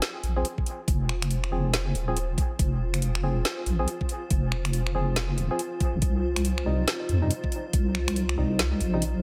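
An overdriven garage drum kit opens this cavernous, brooding deep dubstep passage at 140 BPM in a swung half-time feel, its woody snare, metallic hats and finger snaps sitting up front, soon joined by a knocking, overdriven electronic kick from 0.6 seconds. A dark, deep wobble bass with chorus anchors the low end, while hollow, mellow organ stabs carry a dub echo and a cloudy, evolving granular pad with a slow attack hangs softly in the background. The harmony in F minor moves from Fm to Cm at 6.0 seconds, all inside a light digital ambience.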